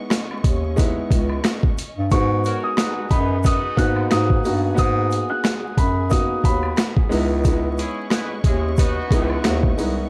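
Boom-bap hip-hop in G# minor at 90 BPM, this dark, gritty excerpt from a longer piece rides a swung 16th-note groove with a dry, hardware-recorded sound dusted with vinyl crackle. Up front, a compressed sampler-style drum kit hits with a thumpy kick, a high-tuned snare, rim clicks and hi-hat, re-recorded in a large room, while a distant tube shaker, woodblock and group handclap sit far in the background. A dark bass clarinet carries the low end in a jazz style, its scooped notes and vibrato thickened by transformer saturation. A woody, vintage upright piano with short sustain plays accompaniment through a cassette-tape tone, and lush bowed studio strings hold smooth chords beneath it. At 2.1 seconds a second, mellow and boxy upright piano enters with a high melody that lasts until 7.4 seconds, and from 2.4 seconds a roomy horn section adds stabs trailed by tape echo. The harmony moves from C#m9 to G#m9 and back to C#m9 at 7.1 seconds.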